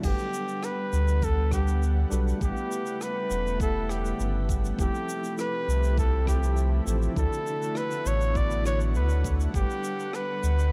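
Smooth and blissful, this sunset chillout cut from a longer piece moves at 101 BPM in G major, with a close-miked flugelhorn singing a pop-style solo up front, full of vibrato and scooped notes and trailed by delay and shimmer reverb. A clean tine electric piano heard through its built-in speakers and a thick, detuned sawtooth unison pad with slow attack, chorus and shimmer reverb carry the chords (Gmaj7, A13, Fmaj9, D69), while a round sine sub bass with tube saturation sits prominently underneath. A knocking electronic kick plays until 9.7 s alongside a quiet brushed jazz kit with crash, rim click and shaker, all in a dark, warm production with light reverb and small room ambience.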